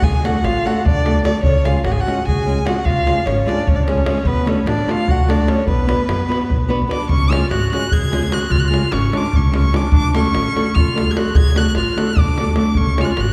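A bowed violin, clarinet, upright bass and davul start together in this bittersweet, restless stretch of Balkan wedding-band folk, set in a straight 7/8 and cut from a longer piece. The single violin carries the melody high and rich, its tone smooth and even with a singing vibrato, while the clarinet sits beneath it as a second line in a classical style, soft in attack and distant. A small, fingerpicked nylon-string guitar joins as accompaniment at 0.2 s, and the pizzicato bass gives a woody low foundation alongside the tight, acoustic davul. The harmony moves among D, C#, and Bm, and the same passage comes round again from 7.1 s. The whole band is heard from further back in a concert hall with a wet, lingering reverb.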